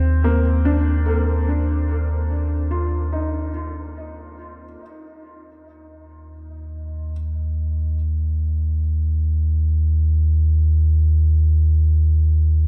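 A felt-muted upright piano and a round analog bass open this luminous, peaceful free-time ambient excerpt together, the piano's intimate, thin-felt arpeggios drifting through a diffuse ambient delay over a sustained suspended chord and fading as the harmony falls away at 4.8 seconds, until the piano stops at 7.1 seconds and the deep, dark bass, up front with its fast attack and sine-and-sawtooth tone, holds its single low note alone in the studio reverb to the end at 12.7 seconds.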